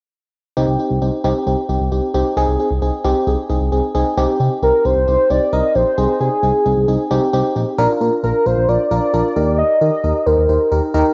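Recorded at home on cassette and soaked in wet spring reverb, this cool, nocturnal synth-pop excerpt in C minor moves at 133 BPM. From 0.6 s, a lush, dreamy FM electric piano with a soft pad layer, chorused and tape-coloured, carries the Cm to Ab/C changes over a dark, smooth synth bass. At 4.6 s, a velvety, detuned unison synth lead enters with vibrato, chorus and tape echo, singing a mellow melody as the harmony moves on through Bb to Eb.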